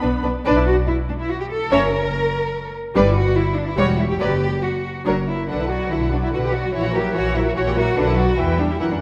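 Focused, bowed cello and rich double bass sections sit up front in this urgent, dramatic classical-period movement for string orchestra, a short cut from a longer piece in a quick 3/4 with a rubato feel. Above them, a lush violin section carries the melody from the background while a second violin line moves smoothly beneath it, and a distant, expressive viola section fills in the accompaniment, all bowed with vibrato. The harmony turns from Bm through F#, G and C#dim/E before closing on Bm and Em, and a moderate scoring stage reverb gives the ensemble a spacious glow.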